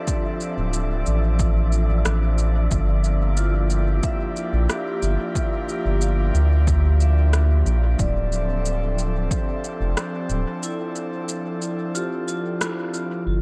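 Ambient dub with a hazy, meditative mood, heard in a short cut from a longer piece that moves from Dm7 to Gm7 and back to Dm7. A breathy pad holds sustained chords with a soft, detuned glow thickened by chorus, while a vibraphone played with medium mallets spins metallic, ringing arpeggios through a low-pass filter and tape echo. Far in the background, a dark, wind-like tuned noise texture drifts with built-in reverb. A round analog bass sits up front, deep and dark with a quick filter pluck, carrying the low end from 0.6 seconds onward. An overdriven electronic kick, punchy and layered, drops out at 9.4 seconds ahead of a break from 10.6 seconds, while the gritty shaker and rim click, dulled by low-pass filtering and trailed by dub echo, carry on through a brief band accent at 12.6 seconds. The mix is dry, with little reverb.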